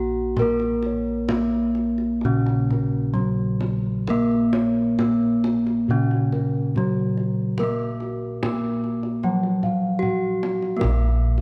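Javanese gamelan with a hypnotic, stately mood in a straight 4/4, cut from a longer piece. A bronze metallophone struck with a wooden mallet carries the ringing melody up front, while a second metallophone played with a horn mallet adds a bright accompaniment beneath it, and close-miked bossed gongs on padded beaters lay down a round, mellow, dry bass. From 0.4 s, a quieter set of bossed gongs spins airy arpeggios and a tight, vintage-sounding kendang keeps the percussion, all within a dark production bathed in moderate stage reverb.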